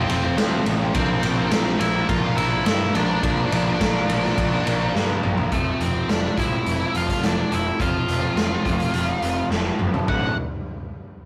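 Quiet-loud alternative rock at 105 BPM in a straight 4/4, this short excerpt cut from a longer piece feels bittersweet and cathartic, moving from F to Bbadd9 and back to F before landing on D. Up front, a dark octave-fuzz lead guitar carries the melody with distortion and a slapback echo, while a bright, compressed overdriven electric guitar plays a riff in the background. A very quiet raw garage guitar plays a riff across the same range with a warm overdriven tone, and a growly fuzz bass, picked and overdriven, anchors the low end. The up-front garage drum kit has a punchy kick, a medium-tuned snare and a rolled-off, saturated top, with hi-hat, ride and toms in play and drum fills at 4.9 and 9.5 seconds. The whole take has the gritty, saturated feel of a rough rehearsal-room recording with light reverb.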